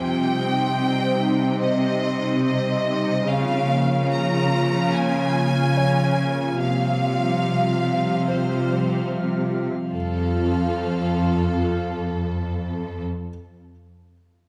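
Set on a moderate scoring-stage reverb, this cinematic fragment at 72 BPM in 4/4 feels relentless and vast, moving from C minor through Bbm7/Db and Csus4 before landing on F near 9.9 seconds. A lush, bowed violin section carries the focused, vibrato-rich melody over a smooth, up-front cello section holding the bass, while an airy, breathy pad with chorus and phaser sustains soft, detuned chords with a slow attack and long release. A clear, very quiet concert grand piano adds natural texture beneath them and drops out at 10.0 seconds, leaving strings and pad to finish the passage.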